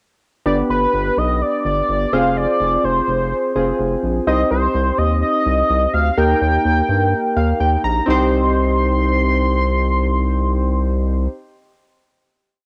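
A straight 4/4 pulse at 126 BPM drives this short, nocturnal synth-pop piece in C minor, with a deep, round analog bass pulsing in eighth notes beneath held, close-voiced chords from warm, detuned analog keys with a filter sweep and chorus. Over them an octave-doubled sawtooth lead with chorus and vibrato states a bold, retro motif in call phrases as the harmony moves through G, Fm, Cm and Eb. The keys add a fill at 7.1 seconds before everything settles onto a final C minor chord at 8.1 seconds, all bathed in a moderate spring reverb and the cool, hazy sheen of a home cassette recording.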